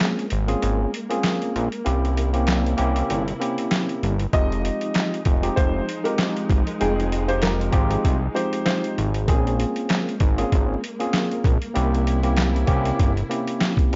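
A compressed, pitched-down boom-bap drum kit with a thumpy kick, snare, hi-hat and handclaps opens this moody, tough hip-hop piece with a swung feel, together with a clean tine electric piano with cassette-tape coloring and dark, con sordino strings holding lush, veiled chords in the background. A fat, detuned sawtooth bass with transformer saturation and a moving notch filter enters at 0.3 seconds, and a worn, woody upright piano carries the melody through analog delay from 4.3 to 8.9 seconds. The recording sounds dry and gritty, with vinyl crackle and a dulled top end.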